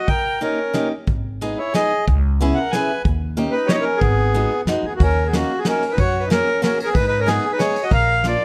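Closely miked with light reverb, this short excerpt from a longer piece is a bittersweet, whirling musette waltz in 3/4 at 184 BPM, played with rubato in G# minor before shifting to Eb minor at 5.0 s. From the opening, a reedy, hollow accordion melody sits up front over an airy second accordion line, joined by a bright, boxy picked steel-string parlour guitar with finger squeak entering at 0.4 s, a soft brush kit with dark cymbals, fat snare and punchy kick, and a woody, thumpy pizzicato upright bass arriving at 1.1 s.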